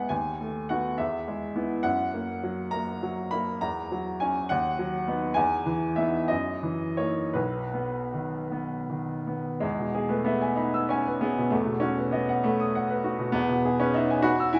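A bright upright piano opens alone on a B7 chord over D#, setting a warm, lyrical romantic character piece in 6/8 that moves freely in rubato at roughly 52 to 70 dotted-quarter beats per minute. Its tone is brilliant and woody, sitting up front and natural, spanning from a low B1 to a high E6. In B major, the harmony passes through E, F#, F#7 over E, and an Emaj7 before settling back on B around 7.4 seconds. At 9.6 seconds a new section shifts the key to E major, with a B7 over E leading home to E at 13.4 seconds. A wet concert hall reverb with a long tail surrounds the piano, and the passage, cut from a longer piece, ends at 14.6 seconds.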